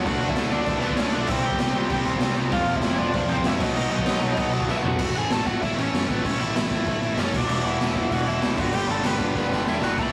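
Punk rock at a rowdy, energetic 194 BPM, cut from a longer piece and captured as a rough rehearsal-room recording in a stone room with moderate reverb, built on chords from D and C through B to A, E5 and G. A raw garage drum kit sits up front, lo-fi and gritty with a punchy kick and muffled, rolled-off top, throwing in fills at 4.7 and 9.4 seconds, while a bluesy overdriven lead guitar carries a distorted, picked melody over the top. Behind them a scooped, compressed distorted guitar and a biting overdriven guitar churn out riffs, the latter dropping out between 5.0 and 7.5 seconds, and a fuzz-driven picked electric bass anchors the low end.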